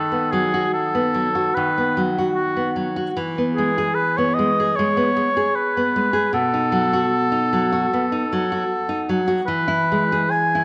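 A romantic duo for oboe and classical guitar in E major, unfolding at 75 BPM in 4/4 with a rubato feel and a warm, serene mood, heard as a short portion cut from a longer piece. The clear oboe carries the melody up front with light vibrato and soft attacks, its classical tone touched by tape echo, while the dark, full-bodied nylon-string guitar accompanies with fingerpicked playing over chords moving from B7/D# to E, B7 and back to E. Close, detailed microphones capture both instruments in a moderate scoring-stage reverb with a 1.6-second decay.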